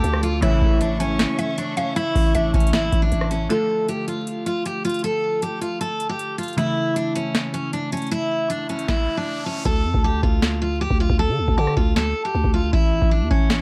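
Menacing and melancholic, this half-time trap beat at 156 BPM in D harmonic minor is cut from a longer piece, and it sits on a bed of vinyl crackle with little reverb. A brilliant, full-bodied picked steel-string acoustic guitar carries the melody up front through the whole passage, softened by a low-pass filter and trailed by delay. Around it, glassy digital keys with chorus play accompaniment until 9.6 s, while distant, lush symphonic strings hold sustained chords in the background only at the opening, joined briefly by a woody, warbling mallet-like synth pluck as a second line and a quick edgy sync-sweep polysynth stab. An overdriven analog drum machine booms throughout with a deep kick, crisp snare, rim click and metallic hats, and a growling, buzzy 808-style bass drops out for the middle stretch before returning at 9.7 s. A background riser builds from 8.6 s into that final section, where the hi-hats fall silent and the chords move between A and Dm.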